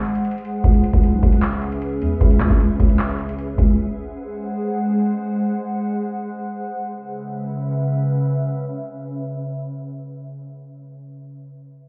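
Hip hop trap in C# minor at 153 BPM with a half-time feel, this menacing, brooding fragment sets a glassy, warbling FM pad with ensemble chorus sustaining chords through to 10.8 seconds, while a booming analog drum machine with a deep kick, handclaps and metallic hats and a growling, buzzy 808-style bass sit up front until both stop at 3.8 seconds, the whole mix sounding muffled as if heard through a wall into a stone room.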